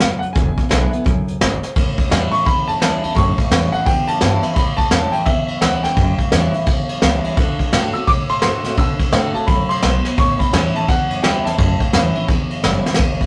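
Rowdy and rollicking, this rockabilly excerpt swings in 4/4, cut from a longer piece. A brush drum kit sits up front, its dark cymbals, medium-tuned snare and tight kick giving a rolled-off, warm crack to the groove, and it closes with a fill at 12.8 seconds. An upright piano carries the melody high in its range from 0.2 to 11.8 seconds, brilliant and ringing with long sustain. Beneath it, a picked dreadnought steel-string acoustic guitar plays bright accompaniment with audible finger squeak, while a pizzicato upright bass with gut strings thumps woody and dark in the background. The harmony moves through dominant sevenths from E7 to A7, D7 and back to A7, and the whole take has the rough, tube-saturated feel of a rehearsal-room recording in a small, moderately reverberant room.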